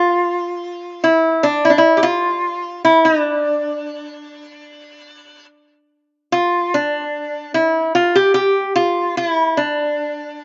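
A lap resonator guitar, played solo with fingerpicks and a slide, carries this short Turkish-flavoured piece, its metallic, nasal tone sitting up front. The mood is soulful and hypnotic, moving at a slow 74 BPM in a straight 4/4, with the instrument tuned to A4 = 442 Hz. The melody stays within a narrow span from D4 to G4, and the acoustic sound keeps a warm body beneath its metallic edge. Recorded outdoors, the playing comes across dry and immediate with only a trace of reverb, and the highs fall away above 7.5 kHz. The music opens in one section and moves into a second at 6.3 seconds, running to 10.4 seconds as a fragment cut from a longer piece.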